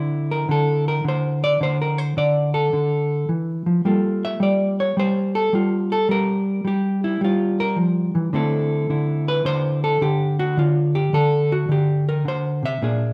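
Solo jazz in D minor, this moody, cool excerpt swings its eighth notes at 107 BPM in 4/4. A single hollow-body electric jazz guitar carries the whole 13.1 seconds, its clean, dark, fingered tone sitting up front in the mix. The guitar ranges from Bb2 up to E5, moving through a D7sus2 chord, then Gm9 at 3.8 seconds, and settling on Dsus2 at 8.3 seconds. A moderate reverb from a large studio, with a 1.2-second decay, gives the instrument an airy sense of space around it. The passage is cut from a longer piece, so it ends mid-thought on that open suspended chord.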